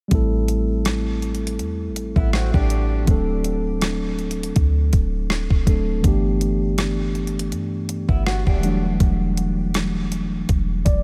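An overdriven, detuned 8-bit drum machine sits up front with a thumpy kick, hi-hat and rim click, giving this longing, moody contemporary R&B excerpt a lightly swung feel. A mellow tine electric piano carries the chords from Am7 through D7 and G69 to Em11 over a deep, boomy sine 808-style bass, and the piano closes with a short fill at 10.5 seconds. A boxy fingerpicked archtop guitar appears briefly with arpeggios at 2.2 and 8.1 seconds, washed in diffuse ambient delay, and the whole piece is set in a digital ambience.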